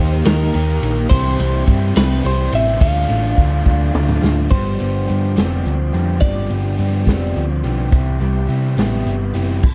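A twangy, compressed twelve-string electric guitar carries the melody through spring reverb and tape echo until it drops out at 7.6 s, in this wistful, carefree indie rock excerpt at 70 BPM in a straight 6/8 over chords moving from Ebadd9 through C and Dm to G7sus4 and Cmaj7. Two overdriven electric guitars play riffs beneath it, one crunchy and bright with phaser, the other with analog chorus and tape echo, while a very quiet tonewheel organ holds sustained chords through a fast rotary speaker with key click. An up-front, round hollow-body short-scale bass and a punchy vintage drum kit with a rolled-off top anchor the dark production, the drums entering at 0.3 s and playing a fill from 3.7 to 4.5 s into the second section.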